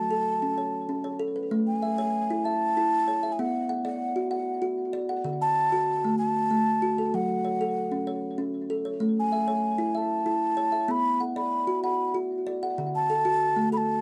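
Southern African traditional music built on an mbira-style interlocking cycle, hypnotic and rippling, moving at 128 BPM in a straight 12/8 in A major. A mellow, airy wooden flute carries the melody from the start, its straight tone and crisp attack sitting up front, while a woody, thumb-plucked kalimba enters at 0.1 seconds with ringing arpeggios colored by tape echo and a boxy small-room character. Cut from a longer piece, this close, dry 1970s-style studio recording with light reverb cycles through F#m, A, Bm and D.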